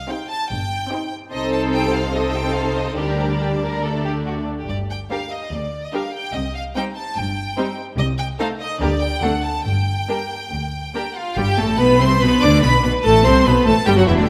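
Urgent and stormy, this quick classical-period passage for string orchestra, cut from a longer piece, sets a clear violin section's vibrato melody high above a focused, distant second violin line and a lush viola accompaniment, while a close, rich cello section and a smooth double bass section enter at 0.5 s to anchor the bowed ensemble in a moderate scoring-stage reverb.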